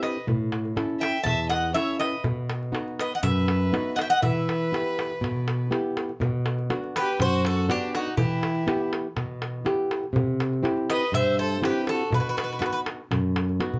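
Greek folk from a bouzouki band, tense and intense, in a straight 4/4 over chords moving through A, B, Em, Bm and C. A metallic, double-strung bouzouki carries the melody up front with some octave-doubled strings, while a single clear violin with light vibrato and an airy bow adds a second line; both stop at 12.8 seconds. The fingerpicked flamenco guitar, also up front with audible finger squeak, and a crisp, saturated metal-shell darbuka struck with hard hands play on to the end of this short cut from a longer piece, all set in a small, reverberant room.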